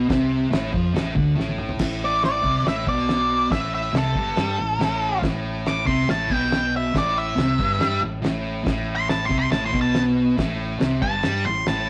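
An octave-fuzz lead guitar, dark and picked and pushed up front, takes a solo from 2.0 seconds through the end of this gritty, menacing garage rock excerpt. Beneath it, a double-tracked, compressed fuzz guitar grinds out the riff alongside a round, hollow-body bass with tube saturation, while a cloth-damped kit with a fat snare, tight kick and rolled-off top thuds along and drops a fill just before the solo. The straight 4/4 groove sits in a rough rehearsal-room sound with a wet studio reverb.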